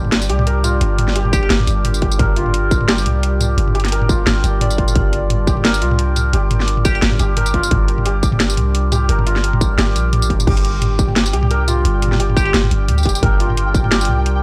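A shimmering santur rings out in arpeggios over a dark, spacious half-time drum and bass groove, carried by an up-front deep 808-style bass, an overdriven kit with cracking snare, bright hats, tambourine, toms and crash, a distorted electronic kick entering at 1.3 seconds, and a moody sidechain-pumped pad in the background, while brief crystalline wavetable plucks flicker through and a pulsing gated texture arrives at 10.7 seconds, all captured as a dry, gritty cassette recording of this excerpt from a longer piece.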